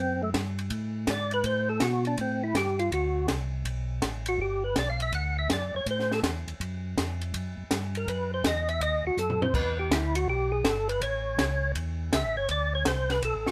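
A dry, up-front sound with light reverb opens this short excerpt of a bluesy, greasy soul jazz organ trio, swinging at 163 BPM in D mixolydian. The melody organ carries a solo across the whole clip, its tone fat and clean with a percussive third-harmonic attack, audible key click, chorus vibrato and a slow rotary speaker. Beneath it, a second tonewheel organ handles the bass line in a round, mellow, dark voice, lightly overdriven and treated with chorus vibrato and slow rotary. A compact cocktail drum kit joins at 0.3 seconds, acoustic and dry, with a punchy kick, high-tuned snare, dark cymbals, hi-hat, ride, crash and toms, and it drops a quick fill at 9.2 seconds. The harmony moves from D7 and G13sus4 through G and D, passes a D#dim7 into Em7 and A7, and rests on Csus2 as the cut ends.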